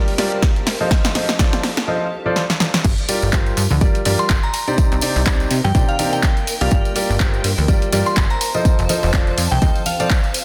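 A clear, vintage-toned concert grand piano drives this bittersweet, energetic piano house cut at 124 BPM in G minor, its short-sustain riff pumping under sidechain with a low-pass filter and delay. A punchy, up-front electronic kick and a house kit of crash, handclaps, hi-hat and snare play through, while a silky analog string pad holds chords only until 1.9 seconds, beneath a blurred, evolving granular cloud pad in the background; a drum fill builds toward the drop at 2.8 seconds, where a funky, plucky analog bass, a gritty, very quiet breakbeat kit and ringing tambourine and congas enter. From 4.2 seconds a crystalline FM synth bell carries the melody with chorus and delay over Gm7, F7 and Cmadd9 chords, all in a dense, heavily limited modern mix with light reverb.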